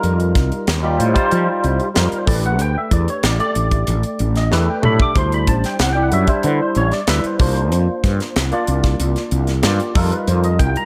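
A barky tine electric piano, a fretless electric bass and a crisp fusion drum kit all start together at 0.0 seconds in this bright, soaring piece of electric jazz fusion, cut from a longer performance. The groove moves at 94 BPM in a straight 4/4, tuned slightly sharp to A4 = 443 Hz, with the harmony moving through suspended ninth chords: F9sus4, A9sus4, D9sus4 and C9sus4, before landing back on F9sus4. The electric piano plays accompaniment through a combo amp, its clean tone thickened by an ensemble chorus. Beneath it, the fretless bass sounds growly and direct, while the drums pair a punchy kick and a high-tuned snare with hi-hat and toms in an airy, polished studio room. A drum fill runs from 4.5 to 5.2 seconds, leading into the harmony's shift to D9sus4. All three parts sit up front in a dry, close mix with little reverb.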